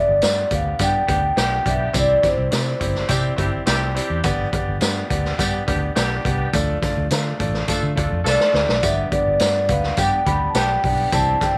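Uptempo 1960s-style soul at 105 BPM, joyful and danceable: a ringing, soft-mallet vibraphone melody with slapback echo floats over brilliant grand piano, dark foam-muted fingered bass, a gritty garage drum kit with a boomy kick and a fill at 8.3 seconds, jingly tambourine and a tight, vintage horn section on the second line, while a mellow tonewheel organ with rotary speaker slips in very quietly at 8.8 seconds, the whole set in light studio reverb.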